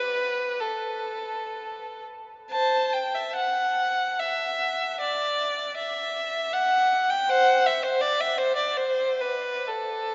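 A lone violin, rich and smooth with a singing vibrato, carries this mournful, lonely classical fragment, its single bowed line sitting up front and ranging from A4 to A5 in A dorian. The free, rubato 3/4 phrasing drifts between 55 and 83 BPM, giving the playing an expressive, searching quality. A long cathedral reverb wraps the even tone in a vast, echoing space, and the top end is softened; this brief passage is cut from a longer piece.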